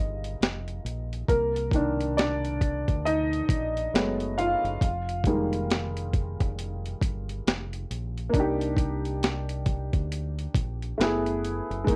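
A woody, slightly detuned upright piano carries this reflective, melancholic lo-fi hip hop piece in F dorian, cut from a longer work, with a featured solo through the first 8.3 seconds. The piano's cassette-tape, low-pass-filtered chords move through Fm11, Cm9 and Gbmadd9. Beneath it at a slow 68 BPM with a swung 16th-note feel, a dark, round, punchy dub-style fingered electric bass holds the low end, while a gritty, compressed, pitched-down boom bap sampler kit sits up front from 0.2 seconds with a thumpy kick, hi-hat and high-tuned snare. Light reverb and worn, warbling old tape with drifting pitch color the overall sound.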